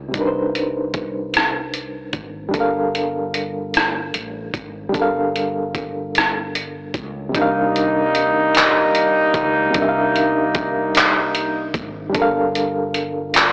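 A barky, reedy electric piano with fast tremolo and light overdrive provides the accompaniment in this yearning, sultry fragment of slow six-eight R&B, moving between Cm11 and Gm9 over a dark, round fretless electric bass and a dusty, gritty sampler-style drum kit with thumpy kick, hi-hat, rim click and handclaps, until a smooth jazz-style horn section enters with up-front stabs at 7.3 seconds, all in a blown-out, AM-radio-like recording with light reverb.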